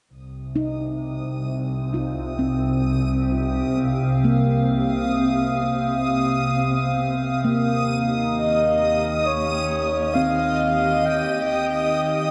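A breathy, flute-like synth lead arrives up front at 8.4 seconds, carrying a soft, vibrato-touched melody with lush chorus and analog delay over this reflective, melancholic ambient excerpt from a longer piece. Beneath it, a glassy FM pad holds ethereal chords with a slow attack and long release, moving from Csus4 to Eb7 at 7.4 seconds at a slow 66 BPM in 4/4, tuned to A4 = 439 Hz. A dark, ringing handpan plays meditative arpeggios through analog delay, while a rich, bowed double bass section sits low and focused in the mix and fades out across the passage. High above, a reversed, swelling texture adds a dreamy, detuned, granular shimmer. The echo-heavy mix is bathed in wet spring reverb and carries the softened, rolled-off top of cassette tape.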